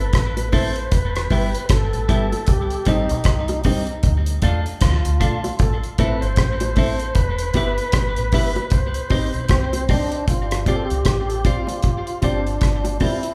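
Roots reggae with an uplifting, laid-back swing, where a full, lightly overdriven tonewheel organ with key click and tape echo carries the melody over a dark, round, punchy dub bass, a dry 70s drum kit with a tight kick up front, a picked, compressed clean electric guitar with spring reverb, fast-tremolo reedy electric piano stabs and soft low-tuned bongos tucked in the background, all captured as a band playing live in one large studio room, with the chords settling on a suspended G7 at 10.3 seconds.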